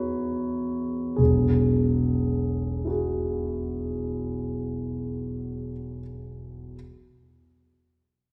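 Impressionist classical solo piano, this short fragment of a longer piece feels serene and hazy, moving in 6/8 with free, rubato timing. A single warm concert grand carries everything, its deep bass reaching down to E1 and its upper register extending to C#5, with a natural tone placed up front. The opening passage slows as it unfolds, resting on a C#m11/E chord before moving at 1.2 seconds into a second passage built on Eadd9. The instrument sits in a wet recital hall with a reverb tail of 1.9 seconds, so each chord blooms into a misty afterglow. The playing lasts until 6.8 seconds.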